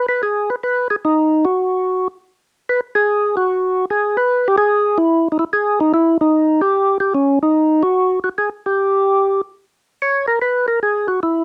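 A fat, lightly overdriven tonewheel organ with percussive key click and a slow rotary speaker sits up front, playing solo through this bluesy, soulful swing jazz clip from a longer piece, with a dry, close 1970s-style studio sound touched by light reverb.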